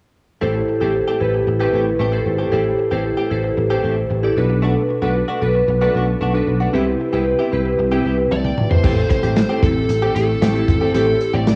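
Glassy, detuned digital keys with chorus sit up front in this urgent, nostalgic 1980s-style pop fragment at 114 BPM in A dorian, sounding from 0.4 seconds alongside a compressed, direct-recorded clean electric guitar riff through analog chorus and delay and a growly, punchy fretless bass over Am7, Bm7 and Cmaj7, until a drum fill at 8.3 seconds brings in a dark modern studio kit with a tight kick and a fuzz-distorted lead guitar melody, both tinted by cassette tape, all within a home cassette recording bathed in moderate spring reverb.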